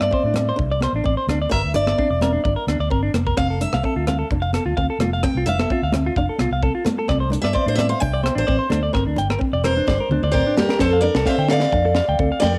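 A dry home cassette recording captures this joyful highlife guitar-band excerpt, cut from a longer piece, in F major at 129 BPM in straight 4/4. A bright, up-front picked steel-string acoustic guitar carries the solo melody over a small fingerpicked nylon-string guitar, compressed clean electric guitar arpeggios with analog delay, and a dark, round fingered electric bass. A tight funk kit with a high-tuned snare and small-room sound drives along with soft-handed, ringing congas in the background, and a drum fill at 9.9 seconds leads into a closing passage on Fadd9 at 10.8 seconds after the chords move through Csus2, Gm and F.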